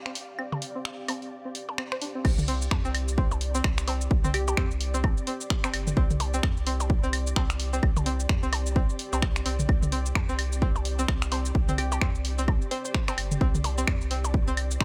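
Sparse and quirky, this minimal techno excerpt at 129 BPM in 4/4 with a 59% sixteenth swing opens on a mellow, ethereal pad with tremolo and a flickering, grainy background texture that lasts until 2.3 seconds, while a twangy, string-like resonator pluck riff with cassette-tape colour and delay joins a small-room analog drum machine of cabasa, crash, finger snaps and hi-hat, plus overdriven electronic claves, toms and blips with dub echo, before the drop at 2.2 seconds brings in a round, deep analog bass and an up-front, tape-touched punchy kick under sidechain pumping, with a hollow, bouncy square-wave pluck darting in briefly from 4.3 seconds, all in a dry, close mix.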